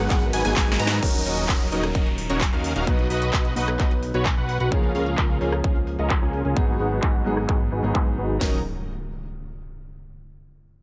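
This emotional, euphoric festival progressive house excerpt in Eb minor at 130 BPM opens on a drop: a smooth vintage grand piano and a fat, detuned analog bass pump under sidechain, joined by a dark, distant string section and a lush, bright pluck arpeggiating in the background through cassette-tape colour and digital delay. A huge, thick supersaw riff with a moving notch drives over two layered big-room kits, one with punchy kick, snare and metallic hats up front, the other adding crash, handclaps, ride, rim click and crisp small-room hats. A drum fill leads into the passage from 1.0 s, where strings and pluck fall away and filter sweeps shape the drums, supersaw and bass while downlifter and impact effects sound. The dry mix moves through Abm7, Ebm7, B, Db6 and Abm7 before the downlifter and impact effects return on Ebm7 at 8.4 s.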